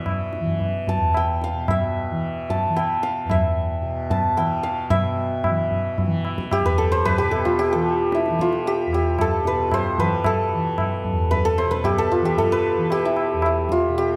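Close, detailed microphones and a light reverb give this Hindustani classical excerpt an intimate, finely etched sound. The santur carries the melody up front, its bright, hammered strings ringing with a shimmering halo between E4 and A5. Beneath it, a tanpura sustains a mellow, softly plucked drone with a gentle buzz from E2 to E3. High-tuned tabla joins at 0.1 seconds, its short-ringing strokes carrying a live-room ambience and marking a straight five-beat cycle. The mood is meditative and full of longing, and the music moves into a new section at 4.9 seconds before the passage, cut from a longer performance, ends at 14.2 seconds.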